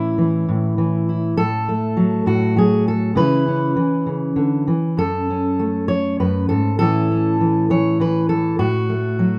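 In a rubato 6/8 lilt at about 67 BPM (dotted quarters), this peaceful, gentle folk fragment, cut from a longer piece and tuned to A4 = 441 Hz, features a solo fingerpicked steel-string dreadnought acoustic guitar with a dark, up-front tone, moving through A, F#m/A, C#m and F#m from F#2 to C#5 in light reverb over 9.4 seconds.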